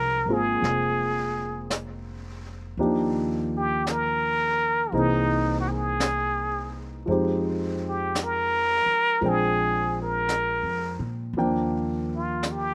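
An intimate, late-night jazz ballad moves at a slow 56 BPM in 4/4 with a swung eighth-note feel, set in Eb major, in this excerpt from a longer piece. A trumpet with plunger mute carries the melody up front, its brilliant, punchy tone sharpened by wah-wah inflections, vibrato and a slapback echo, playing with forceful jazz phrasing. A baby grand piano accompanies with a natural, short-sustain sound, also close and touched by slapback echo, moving through chords such as Bb13, Ebmaj9, C7alt and Fm9 before settling on Ebmaj7. An upright bass played pizzicato gives a woody, thumpy low end from steel strings. A brush drum kit enters at 0.6 seconds, sitting mid-forward with a high-tuned snare and hi-hat and a rolled-off top. The sound is dry and close, with little reverb and scarcely any sense of a room.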